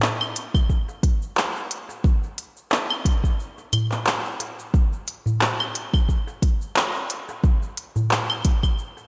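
The recording sounds bright in a 1980s digital style, with light reverb, a large-room ambience and some lossy compression artefacts. This is an earthy downtempo fragment cut from a longer piece, moving at 89 BPM in 4/4 with a 55% swing on the sixteenths. An organic electronic drum kit of claves, handclaps, smooth hi-hat and shaker opens the piece, overdriven, treated with gated reverb and sitting up front. A deep, overdriven electronic kick joins at 0.5 seconds, also placed forward, and a crisp metal-shell darbuka played with soft hands enters at 0.9 seconds, sounding close and acoustic. A break arrives at 8.8 seconds, just before the fragment ends.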